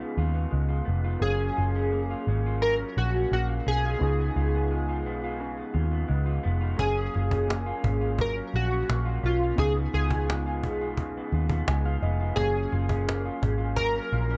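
A hazy, nostalgic stretch of indie bedroom pop opens with glossy, chorused retro synth keys carrying the melody up front, layered over a slightly broken-up electric guitar through a small old amp, soft electric-piano-like synth keys and a round, foam-muted picked electric bass. The tempo sits at an easy 86 BPM in a straight 4/4, in F# major, with the harmony moving between C#7 and F#maj7. The lead keys have a bright pulse-wave sheen with filter sweep, ensemble chorus, plate reverb and tape echo. The guitar is dark and lo-fi with analog chorus and a warbly pitch drift, while the mellow accompaniment keys carry a cassette-tape softness. A woody cajon with hard hands and faint snares enters at 6.8 seconds, and the synth keys add a short fill from 11.3 to 12.4 seconds before this fragment of a longer piece cuts off at 14.4 seconds.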